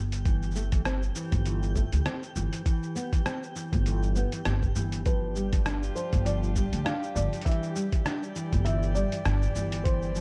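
Folktronica with a playful, delicate mood, this excerpt from a longer piece rides a gentle swung groove under a dark, warm studio ambience. A woody, growly pizzicato upright bass sits up front from the start, alongside a muffled, thumpy electronic kick and a pitched-down, overdriven sampler-style kit of hi-hat, rim click and shaker that sounds re-recorded in a small room. A thumb-plucked nylon-string guitar enters at 0.3 seconds with deep classical arpeggios through a digital delay, while a sparkling granular texture with an octave-up shimmer hangs in the background, bathed in its own reverb. At 5.1 seconds a boxy, felt-muted upright piano takes the melody with audible action noise and its own delay, and a rich string quartet adds sustained chords with light vibrato and an airy sul tasto bow. The harmony moves from C6/G through Cmaj7 and G7 to Em7.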